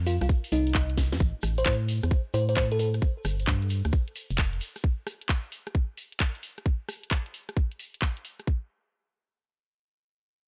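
A moody, soulful slice of UK garage in a two-step style, this short excerpt moves at 132 BPM in 4/4 with a 65% swing on the sixteenths. A hollow, organ-like FM bass with a dark, percussive attack sits up front under a progression of F5, A5 and G5, dropping out at 4.6 seconds. A bell-like FM electric piano carries the sparkling melody, its mellow tone colored by chorus, phaser and tape echo, until it stops at 2.9 seconds. The produced, layered garage kit brings a cracking snare, handclaps, hi-hat and rim click, punctuated by a drum fill at 1.0 seconds, while a tight electronic kick stays prominent and a grainy tube shaker sits in the background of a live room. The whole mix has a dry, gritty hardware character with transformer saturation and a digital ambience.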